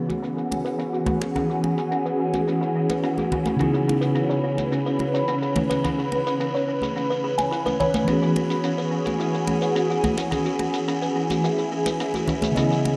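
Warm and blissful, this sunset chillout excerpt in E major moves at a straight 107 BPM in 4/4. A mellow tine electric piano with digital delay plays the accompaniment, while an ethereal, octave-up shimmering ambient pad sustains chords through chorus and phaser. Up front, a woody, buzzing kalimba picks out arpeggios under a filter sweep and delay, and a low-passed electronic hi-hat and shaker sits beneath close, dry, high-tuned congas struck with hard hands. The chords move from E69 to C#m7 at 3.6 seconds and back to E69 at 8.1 seconds, all bathed in a lush hall reverb with a bright 1980s-style digital production.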